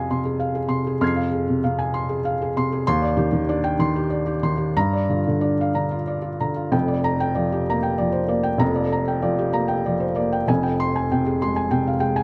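Neoclassical minimalist piano in a melancholic, intimate mood, moving at a rubato 64 BPM in 6/8 for about 12 seconds cut from a longer piece. A felt-muted upright piano plays alone across a range from F1 to C7, its soft, mellow tone sitting up front under close, detailed microphones and light reverb. The harmony drifts from Fm through Cmadd9/Eb and Gm7, shifts to a new section at 6.7 seconds over Gm7/F, and settles on Fmadd9 at 10.5 seconds.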